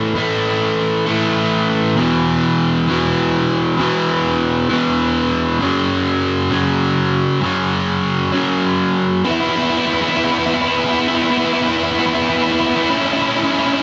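A lone overdriven electric guitar opens this brooding rock excerpt, its picked, double-tracked tone sitting up front and ranging from low E2 to E4 in a 3/4 metre at 99 BPM with a straight pulse. Melancholic power chords move from A5 through E5 to F#5, and at 9.2 seconds a build-up begins, returning to E5 before settling on C#m near the close at 13.8 seconds. A light reverb frames the warm, rounded sound, which stays free of any brittle top end.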